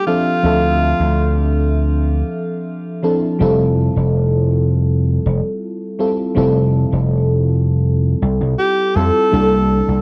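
Carrying the character of cassette tape and light reverb, this faded, dreamy vaporwave fragment at 81 BPM in F major rests on a mellow, dark FM electric piano with analog chorus, joined at 0.4 seconds by a round, punchy slap bass, while a clear alto saxophone with scooped, jazz-style notes and tape echo sounds at the start and returns at 8.6 seconds, all over a progression of Dm9, Fmaj9 and C13 chords.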